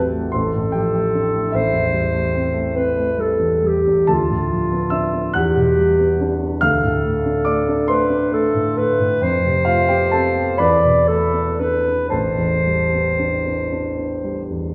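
A mellow clarinet sings a wistful melody over a warm grand piano's accompaniment from the very start, in a slow, rubato 6/8 of 37-51 BPM in dotted quarters in A minor. This hazy impressionist classical duo drifts through seventh and extended chords before settling on Am11 at 12.1 seconds. The clarinet sounds distant and roomy, the piano natural, and the pair are heard from further back in a wet recital hall in this short passage cut from a longer piece.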